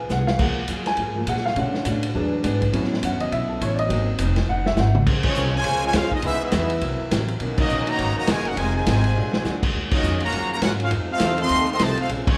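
A sultry, swinging big band excerpt at 205 BPM opens with a woody upright piano solo over pizzicato upright bass, background picked acoustic guitar with finger squeak and a muffled, lo-fi vintage drum kit with punchy kick, then at 5.1 s the piece settles into Bb minor as a very quiet saxophone section holds soft-attack chords, a clear trombone section with light vibrato plays a second line and a bright, up-front trumpet section takes the melody amid band accents and drum fills in a moderate recital hall reverb.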